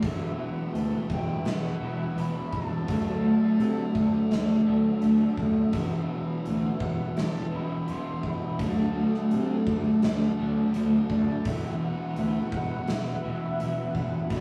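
Melancholic and brooding, this cut from a longer shoegaze and dream pop rock piece moves between Esus2 and D chords, with every part playing throughout its 14.4 seconds. A thick fuzz guitar and a crunchy overdriven guitar sit in the background, and a round, fuzzy picked bass holds the low end. A very quiet, twangy guitar at the edge of break-up plays arpeggios, and a silky, detuned analog string pad holds sustained chords with ensemble chorus and vibrato. Above them a distant, airy silver concert flute carries a mellow, unsteady melody with a crisp chiff. Beneath it all is a gated 80s drum kit in a bright stone room, with a tight kick and a medium-tuned snare, and the mix has a rough rehearsal-room sound with tube saturation and short, wet small-room reverb.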